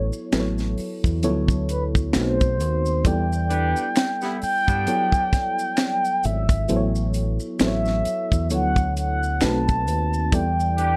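Soulful and late-night, this short neo-soul and R&B excerpt moves at a slow 66 BPM with a swung sixteenth feel in E dorian, cycling through chords like A69, Dmaj7, B7b9 and Em9 under a round, sawtooth-edged, horn-like synth lead with soft attack, vibrato and chorus carrying the melody up front. Beneath it, a full-bodied FM electric piano with tremolo and a faint noise layer supplies the harmony, while a deep, dark fingered electric bass and a dry, tight funk drum kit with a high-tuned snare sit prominently in the mix, and maracas and finger snaps add a roomy texture in the background. A mellow, vintage jazz-style horn section adds soft stabs from 3.5 to 5.3 seconds and again at 10.8 seconds, all wrapped in a dark, warm production with light reverb.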